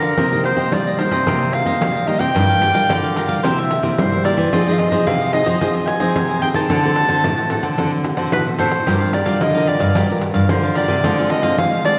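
Heard through the wet reverb of a church or concert hall, this lively, nostalgic samba-choro excerpt in C minor moves at 110 BPM. A clear, close-miked soprano saxophone sits up front, playing a jazz-style solo melody full of vibrato, subtone and scooped notes, over a crisp, bright picked cavaquinho, a fingerpicked classical nylon-string guitar, a full-bodied nylon-string bass guitar with finger squeak in the background, and a jingly pandeiro, while a round, double-strung mandolin adds a brief second line from 2.9 to 3.8 seconds.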